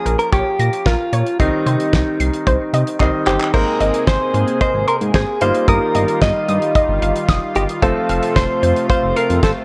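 Cool and melancholic, this synth-pop excerpt sets a clean, picked electric guitar melody up front over clear grand piano accompaniment, warbling detuned pluck arpeggios through analog delay, a smooth sawtooth synth bass and a dry, dark 70s drum kit with fat snare and handclaps, while piano and drum fills just before 3.5 s usher in a lush, airy chorused pad.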